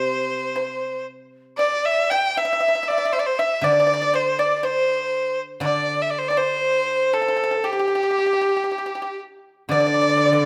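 This Chinese traditional piece for chamber ensemble, cut from a longer work, has a festive yet graceful mood and moves with a free, rubato feel in two. A single bowed erhu carries the melody up front, its clear, earthy tone shaded by light vibrato and portamento, with a smooth top. Behind it, an end-blown bamboo xiao adds a pure, mellow second line in straight, tongued tone with rolled-off highs. A dry, percussive pipa, played with fingerpicks, adds another second line in the same register. Lower down, the guzheng's ringing, silvery strings supply the accompaniment. At 9.7 s a dark, woody cello joins up front on a single bowed note with vibrato, and the whole ensemble sits in a moderate recital hall reverb.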